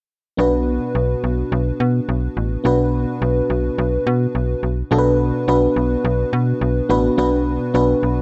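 A lush hall reverb surrounds this short, nostalgic and moody fragment of 1980s-style pop in B minor, moving at 106 BPM in a straight 4/4. Up front, a dreamy, mellow FM electric piano with a soft pad layer and chorus sits over a snappy, metallic slap-like FM bass with a digital bite, both entering at 0.4 seconds and sounding until 8.2 seconds. The harmony stays on B minor, breaking briefly into a chordless moment at 4.6 seconds before returning to B minor for the second section.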